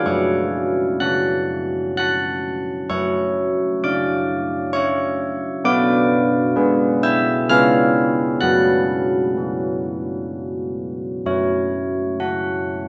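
A solo carillon opens the fragment on an open F# sonority, ringing up front with an iron clapper strike and a distinct minor-third overtone. This classical tune for church bells moves in a slow, straight triple metre, and its mood is solemn and wintry. The bells span a broad range, from low tones to high ones. Around 5.6 seconds the harmony shifts to B minor, passing through a diminished chord and a dominant seventh before returning to an open F# sonority near 8.4 seconds. The bells carry a boxy, small-room character that sits inside a wet recital-hall reverb, and the top end is softened. The opening phrase comes back at 11.2 seconds before the passage cuts off mid-piece.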